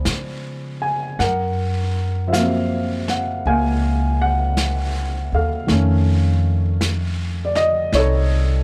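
A warm baby grand piano opens this wistful, melancholic swung jazz ballad fragment with rich extended chords, joined almost at once by a woody pizzicato upright bass up front and a dark, smooth brush kit of snare and hi-hat sitting low in the mix, all framed by a moderate club reverb.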